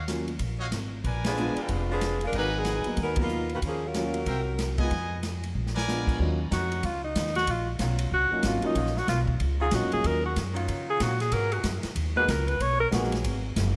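Lightly reverberant and brassy, this dramatic big band swing piece in Eb minor at 187 BPM opens with soft-attack, brilliant trumpet stabs over a woody, thumpy pizzicato upright bass, a warm, intimate grand piano and an airy, polished drum kit with a punchy kick, and a clear, up-front saxophone section enters with the melody at 1.3 seconds. After a drum fill at 5.6 seconds, a forceful, vintage-toned alto saxophone takes the lead at 6.5 seconds against sustained saxophone-section chords in the background.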